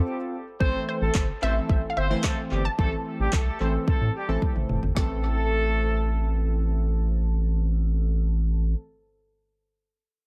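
Soaked in an echo-heavy digital ambience, this driving, bittersweet dance-pop excerpt in A minor at 110 BPM opens on glossy, chorused retro synth keys pumping over an F chord. At 0.6 s a deep house drum kit with a woody snare and handclaps, a round analog bass, and a distant, dark horn section carrying the melody with light vibrato all arrive, and at 0.9 s a lush, detuned unison pluck adds a higher line through tape echo. A drum fill at 4.4 s leads into a second section where the drums soon drop out, leaving the up-front bass and the keys pumping to the end.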